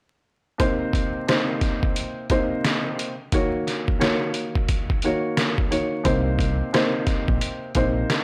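A dry, gritty hardware sound with vinyl crackle frames this dark boom-bap hip-hop excerpt, cut from a longer piece and moving at 88 BPM in 4/4 with a 62% swing on the sixteenths. A dark, woody upright piano sits up front from 0.6 seconds, its boxy, mellow tone passed through cassette tape and filtered at both ends as it moves from Cm7 to Ebm7 and back to Cm7 in C minor. The trip hop sampler-style drum kit enters at the same moment, compressed and pitched down, with a thumpy kick, a medium-tuned snare and hi-hat, re-recorded in a large room yet still close and forward in the mix. At 6.1 seconds a deep dub fingered electric bass arrives, round and punchy with a direct, amped character, holding the low register between Bb1 and C2. The mood stays gritty and brooding throughout this single section.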